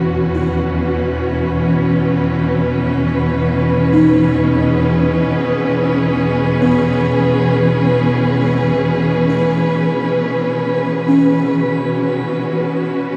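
In free time, this spacious, melancholic ambient fragment rests on a dark, lush symphonic string section bowing sustained chords up front, its expressive vibrato and smooth top shifting from E to B7 at 9.3 seconds. Behind it, a buzzing kalimba plucks soft, woody arpeggios with a hollow-box tone, trailed by a diffuse ambient delay. A long, wet shimmer reverb and a dusky, warm production give the short passage a vast, hazy atmosphere.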